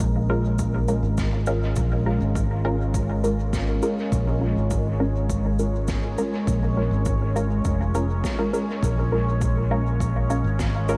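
Under a vinyl crackle and light small-room reverb, this meditative ambient dub excerpt in Bb minor moves at 102 BPM on a single Bbm7 chord, with a round, up-front fingered electric bass, a deep, moody sawtooth pad with chorus and slow-attack sustained chords, a muted, full-bodied filtered chord stab with phaser and dub echo entering at 0.3 seconds, a punchy overdriven electronic kick set in the background that stops at 10.7 seconds, and a distant, roomy cabasa and snare treated with dub echo.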